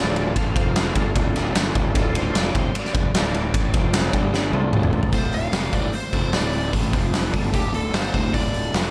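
Light reverb and a big, pumping room sound frame this brooding, heavy excerpt of blues rock power trio and southern rock at 150 BPM in D minor, where an up-front, oversized low-tuned acoustic drum kit with dark cymbals, a fat snare and a boomy kick drives a growly fuzz fingered electric bass and a thick, gritty tonewheel organ with chorus vibrato and slow rotary speaker in the background, until a drum fill from 4.3 seconds leads to 5.1 seconds, when a bright, double-tracked picked guitar riff with phaser and a biting overdriven lead guitar melody with wah and tape echo enter over Dm and F5 chords.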